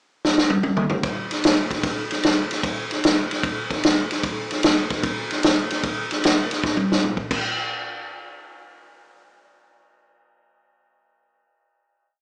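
This swaggering, rollicking blues piece moves at 150 BPM in 4/4, with a swing on the eighth notes. A vintage acoustic drum kit carries the piece, entering at 0.2 s with a fill over the pickup bar before settling into a double shuffle groove through the head. The kit sits up front, with a punchy kick, a medium-tuned snare and natural-sounding ride, crash and toms. Another fill arrives at 6.6 s, and the drums stop at 7.4 s as the piece moves into its final hit. Light reverb and a small-speaker character give the sound the feel of a band playing live in one room.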